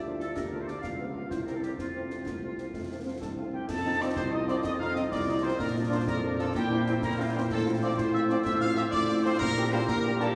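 A proud, rousing military-style march for wind band in 6/8 opens with a smooth-topped tuba up front, a euphonium in the background until 3.6 seconds, and a soft-attacked woodwind section with light vibrato, while a clear trumpet section carries the melody over dark French horns and concert snare, bass drum and clash cymbals. A distant wooden piccolo with crisp attack and expressive vibrato joins at 3.2 seconds, and a very quiet, bright trombone section adds sustained chords from 4.0 seconds. The ensemble sits in the long, wet reverb of a cathedral-like hall, and the passage is cut from a longer piece.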